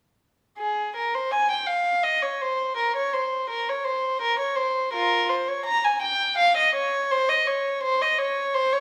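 This is a classical, baroque-style suite movement for unaccompanied violin, heard as a brief fragment cut from a longer piece. The mood is grave and introspective, moving at about 83 BPM in 3/4 with a flexible, rubato feel, and tuned to A4 = 441 Hz. A single bowed violin plays alone from 0.6 to 8.8 seconds, ranging from F4 to Bb5 in a period style. Its gut-string tone is dark and reedy with a nasal edge, placed up front in the mix. A moderate recital hall reverb, with a decay of 1.4 seconds, surrounds the instrument with a sense of space.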